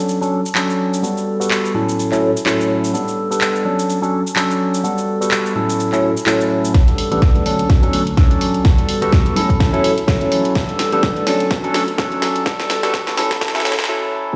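Heard as if played through a big sound system in a bare stone room, with a moderate plate reverb, this short cut of filtered disco house at 126 BPM feels joyful and feel-good, its 16ths carrying a light swing. A bright, barky tine electric piano sits up front, phased, gritty with vintage 12-bit sampler texture and pumping against the sidechain as a filter sweeps across its chords of Dmaj7, Gmaj9, F#m7/A and A9sus4, over a tape-warm house kit of handclaps, hi-hat, shaker and cracking snare. At 6.7 s a punchy, up-front electronic kick arrives as a build-up begins with a drum fill and a filter sweep, a fingered electric bass joins in the background at 7.1 s, and a brief break lands at 13.9 s.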